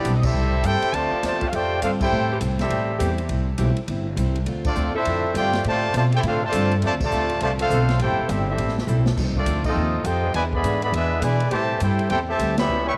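A swinging 204 BPM pulse in 4/4 drives this brassy, dramatic big band excerpt in A minor, with a thumpy, woody upright bass up front beside an airy drum kit whose punchy kick and ride cymbal push through band accents and a drum fill at 8.9 seconds. The trumpet section carries the melody with vibrato and tape echo, a clear trombone section sits behind it on a second line with its own echo, and a picked steel-string acoustic guitar adds background accompaniment with audible finger squeak. Very quiet, mellow saxophones hold sustained chords under spring reverb as the harmony moves from Am7 and Dm7 through F7 and E7 back to Am7.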